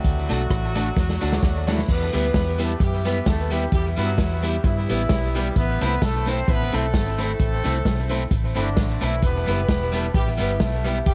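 A muffled, up-front vintage drum kit of tight kick, snare, rim click, hi-hat and crash drives this energetic, mischievous ska cut, rolling through a fill from 1.0 to 1.9 seconds before the groove settles over E minor and A minor. A round, foam-muted electric bass sits close beside it, while a mellow, distant horn section carries the octave-doubled melody with light vibrato and tape echo. A slightly broken-up picked electric guitar and a jangly, metallic tack piano with tube saturation, lying in the background, join from 0.3 seconds, all framed by small-room ambience and vinyl crackle.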